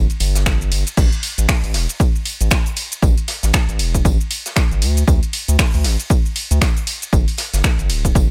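Deep house with a deep, late-night mood and a swung groove, opening on a round, dark analog bass with sidechain pumping that sits up front, joined by an overdriven electronic kit of crash, ride, finger snaps, hi-hat and shaker re-recorded in a small room, a filtered acoustic kit of hi-hat, snare and tambourine in the background, and a punchy, tape-warmed electronic kick arriving at 0.5 seconds in this dry excerpt.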